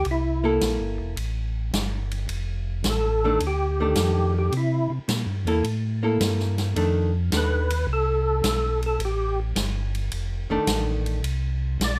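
Bluesy and swinging, this soul jazz organ trio excerpt features a fat, percussive tonewheel organ carrying the melody through slow rotary speaker and chorus vibrato with audible key click, a round, dark organ bass underneath, a clean hollow-body archtop guitar picking dark accompaniment from 0.4 to 11.2 seconds, and an acoustic big-band drum kit of hi-hat, ride cymbal and medium-tuned snare swinging in a moderate studio reverb over chords moving from C13 to F13 and C6 before settling on C7sus2 at 11.2 seconds.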